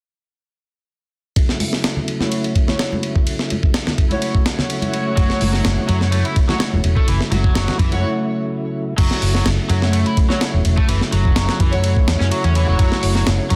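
Up-front, gritty sampler-style breakbeat drums with a thumpy kick and a softly clipped snare drive this swaggering, energetic breakbeat piece at 126 BPM in F# minor with a light 16th-note swing. They enter at 1.4 s with a mellow tonewheel organ holding an F#m7 chord through overdrive, a fast rotary speaker, 12-bit sampler grit and sidechain pumping, while from 1.6 s ringing congas sit in the background until the break at 8.0 s. A dark, bowed string section adds soft-attack stabs under a filter sweep and tape echo, and from 5.2 s a round hollow-body electric bass joins a bright, double-tracked guitar riff played through a cranked stack with tape echo, all within a dense, heavily limited mix with light reverb.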